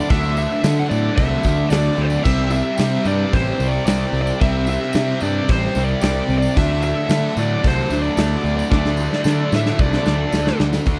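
A straight 4/4 groove at 112 BPM drives this brooding, gritty classic rock excerpt, with a big acoustic drum kit (a dark, smooth sound with a medium-tuned snare and a punchy kick) and a distant, jingly tambourine underpinning an up-front, round fuzz bass that sits on Dadd9 and Cadd9 chords. A bright distorted guitar and a crunchy background guitar with phaser play riffs, while a smooth, dark overdriven lead guitar carries the melody with slapback echo and a barely audible tonewheel organ holds sustained chords through its slow rotary speaker. The dry, close 1970s-style studio sound features a drum fill from 8.7 to 10.9 seconds.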